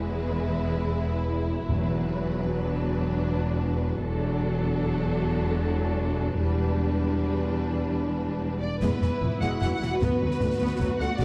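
Deep bowed cellos and double basses sit prominently at the bottom of this cut from a longer heroic adventure film score, moving at 152 BPM in a straight 3/4 with a triumphant mood. Above them, two lush violin sections carry the melody and a second line with vibrato and soft attacks, while the focused violas fill in the accompaniment, all sustained through an extended build-up over E-centred harmony that turns through Bm/E and G/E. Hard-mallet timpani sound in the background from 1.7 to 2.2 seconds. At 8.6 seconds a mellow French horn section enters with sustained chords, and at 8.8 seconds concert snare drum, bright clash cymbals and concert bass drum join as the harmony returns to E and then shifts to Bm/D. The dark production places the orchestra in a reverberant recital hall, giving the sound a rich, enveloping depth.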